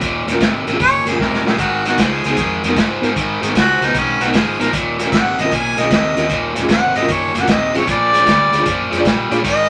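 Moderate studio reverb gives this short, mournful and smoky electric blues shuffle in Eb minor a roomy feel as it swings at 153 BPM over Ebm9, Abm9 and Bb7#9 chords. A bright, picked, overdriven guitar riff sits up front over a round, foam-muted electric bass and a gritty, saturated breakbeat kit with a punchy kick and rolled-off top, which plays a fill at 1.2 seconds. A reedy electric piano with fast tremolo fills in the harmony, while a mellow, distant harmonica enters at 0.8 seconds and carries a jazz-style solo full of tongue slaps and scooped notes.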